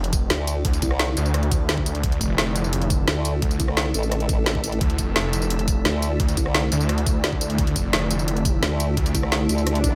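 This cut from a dark technical drum and bass track opens straight away with a swarming, warbling drone holding a D5 chord over a thick, detuned saw bass and an overdriven kit of woody snare, bright hats, rim click and tambourine, with a knocking electronic kick joining at 0.1 s. In D minor at 173 BPM, the mood is futuristic and mechanical: a pulse-wave wobble bass with a formant filter enters at 0.3 s, both basses sit up front with chorus, and sidechain pumping moves the drone and saw bass in a fairly dry room. An electronic swell arrives at 9.8 s as the section closes.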